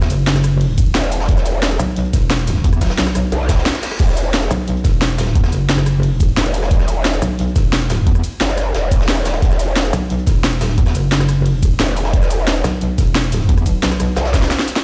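A metallic, distorted wobble bass opens this dark, futuristic technical drum and bass drop alongside an overdriven electronic drum and bass kit with cracking snare and bright hats and a gritty, saturated breakbeat kit tucked in the background, then a knocking, up-front electronic kick and a growling, formant-filtered bass with sidechain pumping join within the first second, a very quiet reverse cymbal at 3.6 seconds leads into a brief break at 3.7 seconds, and a drum fill arrives at 14.3 seconds.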